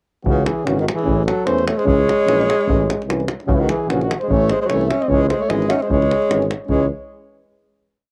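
Opening at 0.2 seconds with a mellow flugelhorn spinning a motif-based melody over a tuba's soft root-and-fifth bass and a distant, roomy euphonium pulse, this short, virtuosic and bittersweet Balkan brass band piece in C# harmonic minor at 149 BPM swings between C#m and A as a warm, vibrato-rich alto saxophone shadows the tune mostly in thirds up front, a dark, breathy trombone whispers its pulse in the background, and a deep davul drives a two-stick pattern, all captured in a moderate booth ambience on home cassette, with plate reverb on the flugelhorn, saxophone and trombone, before settling on a final chord at 6.7 seconds.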